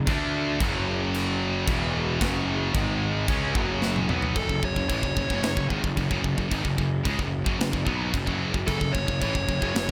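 Heavy metal in F# minor at 111 BPM, aggressive and epic, opening in half time as two scooped, high-gain guitars and a double-tracked, sludgy overdriven guitar drive a riff over a growly fuzz bass and a tight, polished drum kit with bright cymbals and china crashes. After a drum fill at 3.8 seconds, the sludgy guitar stops and a dark, smooth lead guitar takes a solo from 4.4 seconds in the upper register. The mix is dry and up front, with the bass and drums forward and two of the rhythm guitars set back, in a short section cut from a longer piece.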